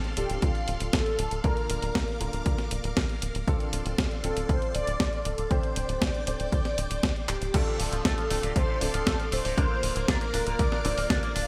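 A bright, polished 1980s-style digital sheen and a lush hall reverb frame this nostalgic, melodramatic italo disco excerpt in D minor, moving at 118 BPM in a straight 4/4. A punchy, layered electronic kick and a clean 12-bit drum machine with handclaps, hi-hat, crash and a medium-tuned snare drive the groove, while a tight, nasal sequencer bass with a fast filter pluck pulses up front from D1 to D2. Above it, a swirling, phased string machine holds sustained chords and a grand piano adds polished stabs with analog chorus. The melody comes from a round, detuned synth brass with vibrato, gritty 12-bit sampler texture and digital delay, singing between F4 and D5 over chords that circle Dm7, Bb/D and Csus2/D. After a drum fill at 7.3 seconds, a twangy, clean electric guitar through an envelope filter enters at 7.5 seconds with picked arpeggios washed in chorus and delay.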